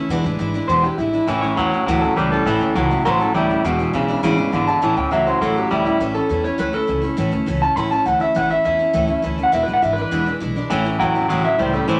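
Rockabilly with a retro, rollicking feel, this excerpt is driven by a bright, full-bodied steel-string acoustic guitar, up front with audible finger squeak, over a woody, thumpy upright bass. A slightly broken-up electric guitar through a small old amp carries the melody, while a clean, twangy electric guitar with spring reverb plays a riff from 1.3 seconds. That riff gives way at 6 seconds to a clean electric guitar solo and returns at 10.7 seconds, all in a moderate studio reverb.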